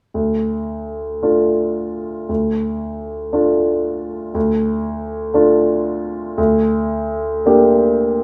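A grand piano enters at 0.1 seconds on a D minor chord, setting a brooding, bittersweet tone for this romantic character piece in D minor. The tempo is slow and flexible, moving between 50 and 62 BPM in dotted quarters in 6/8 with rubato. The solo piano has a warm, smooth, vintage tone and sits up front, its range running from D2 to G4. At 6.4 seconds the harmony shifts to G minor over a D in the bass before the playing stops at 8.2 seconds, a short passage cut from a longer piece. A moderate recital hall reverb surrounds the instrument with a gentle, lingering ambience.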